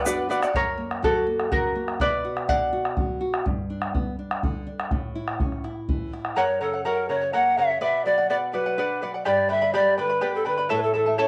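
Andean folk in a straight 6/8 at 83 BPM, wistful and earthy, with a minor-key progression through Bm, F#, G and A, heard as a cut from a longer piece and captured as a home cassette recording in a small, reverberant room. A nylon-string guitar fingerpicks a classical accompaniment throughout with audible finger squeak, a grainy egg shaker ticks briefly at the start, and a deep, dark bombo thuds from 0.4 to 6.4 seconds beneath a shimmering, double-strung charango solo whose octave-doubled strings ring with plate reverb. At 6.4 seconds airy cane pan pipes take the melody with soft, chiffy attacks and gentle vibrato, while the charango returns to accompany them.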